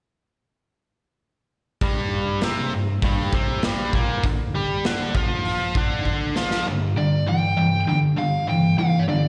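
A straight 4/4 pulse at 99 BPM drives this gritty blues rock and southern rock fragment, cut from a longer live gig heard through the venue's PA with recital hall reverb, where a raw garage drum kit of punchy kick, medium-tuned snare and hi-hat sounds saturated and up front in a bright, pumping stone room, closing its run with a fill at 6.1 seconds. A bright, double-tracked overdriven electric guitar carries the picked riff with slapback echo from 1.8 seconds, moving from Gmadd11 to Dmadd11 and settling on G5. At 7.0 seconds a fingered overdriven slide guitar with a warm edge and its own slapback echo takes up the melody high in its range.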